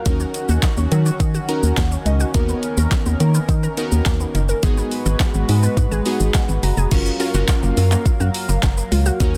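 Dance-pop with an upbeat, summery mood, cut from a longer piece, built over a chord sequence running from D#m7 through Bmaj7/D# and G#m7 to a new section on F#maj7 at 6.9 seconds. A hollow, dark FM bass with an organ-like tone sits up front beside an electronic R&B drum kit with soft kick, fat snare, hats, claps, shaker and crash, while glassy, airy digital keys with chorus and a filter sweep comp and add fills at 1.2 and 6.1 seconds. A shimmering, retro pulse-width pad holds mellow sustained chords, and a lush, punchy detuned pluck plays arpeggios in the background through flanger and digital delay, with the pad, pluck, keys and bass pumping to the sidechain in a dense, heavily limited modern master with digital ambience.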